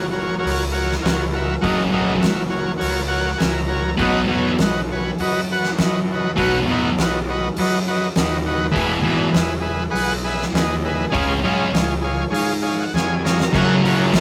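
A rough, tube-saturated rehearsal-room sound with light reverb frames this rowdy, raw garage rock excerpt at 101 BPM in F# mixolydian, where a buzzy vintage combo organ holds sustained chords with light vibrato and adds fills, a punchy overdriven fuzz bass picks the low end, an oversized low-tuned drum kit with a boomy kick, fat snare and dark cymbals pumps in the big room from 0.5 seconds, and a bright, double-tracked thick fuzz guitar riff enters up front at 1.6 seconds, moving through F#, B, E and C# before a drum fill at 12.9 seconds brings it back to F#.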